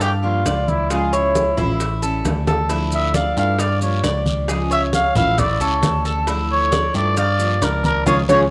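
A cup-muted trumpet leads this short, danceable excerpt of Cuban son and guajira, its veiled, growling tone carrying a light vibrato and a gritty, jazz-style edge as it sits up front yet sounds roomy and distant. Beneath it, a bell-like tine electric piano plays the bass line with a clean, direct clarity, while a Cuban tres adds metallic arpeggios from its double strings and a picked steel-string dreadnought guitar supplies bright accompaniment with audible finger squeak. Thick-skinned, low-tuned congas struck with hard hands and tight, high-pitched bongos played softly stay in the background, as does a raspy guiro that joins from 2.7 seconds, while close, dry maracas add a grainy texture. At a straight 134 BPM in 4/4, the sultry groove cycles through Gm7, C#, A7 and Dmadd9, with a drum fill at 2.5 seconds and a band accent closing the passage at 8.1 seconds. An echo-chamber reverb and small-room ambience give the ensemble a warm glow.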